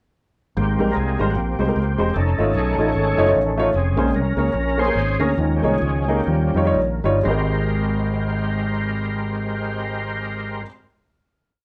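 A gritty, overdriven tonewheel organ with slow rotary speaker and chorus vibrato takes the lead in this short, hopeful and soulful uptempo gospel piece in Ab major, swinging in 4/4 at 114-152 BPM through a breakdown that slows from 3.7 seconds before settling on a held Abmaj9 final chord at 7.3 seconds, backed by a woody upright piano with audible action noise playing off-beat drop2 chords and a punchy, up-front fingered electric bass walking and running with chromatic approach notes, the band captured live in one room with moderate studio reverb.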